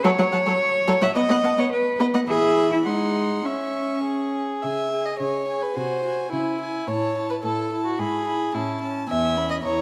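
Graceful and spirited, this short cut from a longer classical-period movement for string quartet moves at a quick 107 BPM in 2/4 with a rubato feel, set in C# minor at a tuning of A4 = 439 Hz. All four players sound together throughout, bowed on gut strings in period style. The first violin carries the melody high in its register with a reedy, lightly vibrato-touched tone, while the second violin plays a second line up front with an airy, nasal bow sound. The viola fills in the accompaniment with a dark, smooth-topped voice, and the cello anchors the bass with a rich, up-front presence that also reaches well into the upper range. After an opening section, a second section begins at 4.6 seconds, its harmony passing through G#7/B#, C#m and A before settling on C#m7/E near the close. A moderate scoring-stage reverb and a dark, warm production give the ensemble a rounded, intimate glow.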